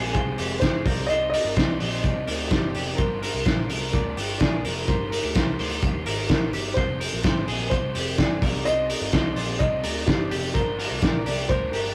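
Wistful and bittersweet, this short cut of jangly indie pop at 127 BPM sets a woody upright piano melody, its action noise audible, over crunchy overdriven guitar accompaniment, a bright, twangy twelve-string electric guitar picking arpeggios in the background, a round, punchy foam-muted electric bass, and an up-front, cloth-damped drum kit with a fat snare, tight kick and hi-hat, all captured in a rough, warmly saturated rehearsal-room sound with small-room ambience as the chords cycle from Fmadd9 through Cmadd9, Gm7 and Eb/G.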